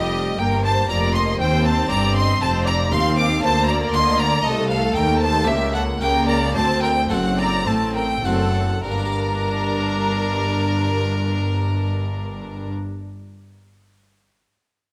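Dramatic and stormy, this excerpt from a baroque-style G minor concerto movement moves at 100-119 BPM in straight 4/4, with a clear, focused solo violin carrying the melody up front over vibrato-rich violin sections that share the tune and add a second line, smooth, even viola and cello sections, a distant, lush double bass section, and a very quiet, brilliant French-style harpsichord adding dry, plucked accompaniment, the tempo slowing from 3.4 to 8.8 seconds before a return to G minor, the whole set in a moderate scoring-stage reverb caught by close, detailed microphones.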